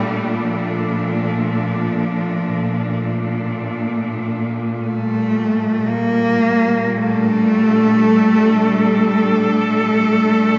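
Desolate and dark, this free-time ambient excerpt sets an expressive solo cello, soft-attacked with vibrato and portamento, singing a low melody through shimmer reverb and dub echo over a focused, bowed cello section holding sustained chords that move from Dm to Gmadd9 at 4.8 seconds, all bathed in a wet spring reverb and an echo-heavy mix that keeps the top end dark.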